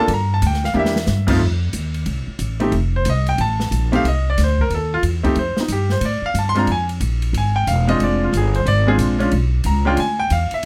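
A clear grand piano opens this brief excerpt from a relaxed, swinging jazz trio at 182 BPM, playing the melody up front with intimate, audible action noise over a woody, thumpy pizzicato upright bass on gut strings and an airy acoustic drum kit with dark cymbals and a boomy kick, which slips in a short fill at 0.7 seconds as the dry, closely miked performance moves through chords from G5 and F7 to Bb7 and Bdim7.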